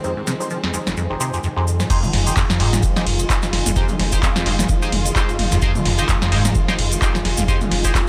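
Acid house at 129 BPM in F minor with a 16th-note swing, gritty and hypnotic, built on a squelchy, resonant sawtooth acid riff with phaser, chorus and tape echo, nasal band-passed chord stabs on an Fm7, a dark bowed string section with vibrato and portamento, a grainy cabasa, and a deep, warbling ambient pad in the background, with strings and pad pumping against the sidechain. An electro analog drum machine with a punchy snare, metallic hats, claps, toms, ride and crash enters up front at 0.3 s. At 1.9 s the drop arrives with a deep analog kick, followed at 2.1 s by a thick, saturated triangle sub bass on F1, all in a dry mix.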